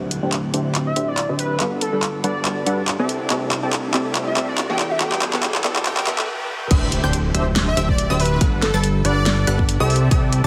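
Emotional, dreamy future bass at 141 BPM in a half-time, lightly swung 4/4, cut from a longer piece, where a soft, breathy pad, a detuned supersaw stab riff with filter sweeps, a fat sawtooth analog bass, an airy chorused lead melody with vibrato and an up-front pop kit with fat snare and handclaps build over D9sus4, Gmaj7, C69 and Em11 chords with a quiet riser, then stop briefly before the drop at 6.7 seconds brings in a punchy layered electronic kick, bright arpeggiated unison plucks and an impact, with the synths and bass pumping under sidechain and everything bathed in shimmer reverb with a heavily compressed, radio-like finish.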